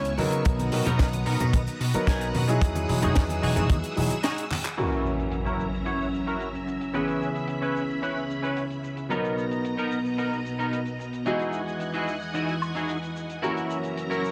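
A dry, tight kick drum sits up front in this cosmic, groovy nu-disco excerpt at 111 BPM in 4/4, driving the opening until 3.8 s alongside a round, punchy slap bass and very quiet, ringing cabasa and congas. A lush, sawtooth string machine holds sustained chords throughout with ensemble chorus and sidechain pumping. A bright, clean semi-hollow guitar picks out a riff through chorus, a low-pass filter and dub echo, while an intimate grand piano with audible action noise comps through its own pumping, filtering and echo. The tight funk kit brings bright cymbals, a high-tuned snare, hi-hat, shaker, handclaps and woodblock, all filtered. After a short break with a drum fill and band accent, an electronic impact lands at 4.8 s, and filter sweeps run on the guitar and string machine over a progression moving from Bmaj7 and Emaj9 through F#7 and C#m7, all in light studio reverb.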